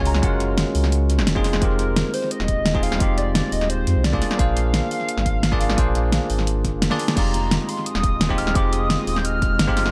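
Soulful, lush liquid drum and bass at 173 BPM in F dorian, cut from a longer piece, where a hollow, woody clarinet-like synth lead with chorus, cassette tape and tape echo carries the melody over a bell-like tine electric piano, a deep sine-and-triangle sub bass with octave, a fat-snared pop drum kit and a punchy electronic kick, with the kick dropping out from 6.8 seconds and a drum fill at 6.9 seconds before a thick, detuned unison pad with phaser and sidechain pumping enters in the background at 7.2 seconds, all set in an echo-heavy digital ambience.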